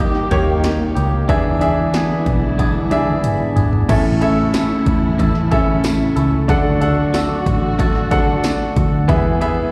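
A bright baby grand piano leads this anthemic, hopeful piano-driven pop passage, sitting up front with long sustain and a slapback echo as it plays the accompaniment over a dark studio string section holding sustained chords in the background with vibrato and portamento. A clean, twangy electric guitar plays a compressed, picked riff colored by phaser and slapback echo, while a vintage foam-muted picked bass adds a round, amped low end. A punchy analog drum machine with overdrive drives the groove on kick, snare, hi-hat, toms and crash, and plays a fill from 2.6 to 3.9 seconds before the harmony settles onto A, then D and E. A distant, jingly tambourine joins at 4.5 seconds with its own slapback echo, tucked far back as if in a large room. The whole excerpt, cut from a longer piece, sounds like a live gig heard through the venue's PA with light recital hall reverb.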